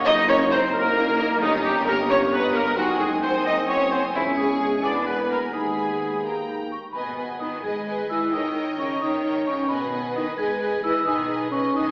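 Moving in a 6/8 at 88 dotted-quarter beats per minute, this cinematic cue in G# minor has a sneaky, mischievous, whimsical air and is cut from a longer piece. A very quiet, distant violin section carries the melody with vibrato and a soft attack. A second, smooth symphonic violin section, a clear solo oboe and an airy, hollow flute section trace second lines alongside it. An expressive viola section with portamento and a bassoon with a smooth top fill in the accompaniment, while a mellow French horn section holds sustained chords. Underneath, a rich cello section, a dark double bass section and a roomy tuba form the bass. The oboe, flute, bassoon and tuba fall silent before 7 s, and at 6.9 s a bell-like, delicate celesta joins the melody over a G#m and D#7 harmony. The whole ensemble sits in a recital-hall reverb, heard from further back in the room with a lo-fi, AM-radio tint.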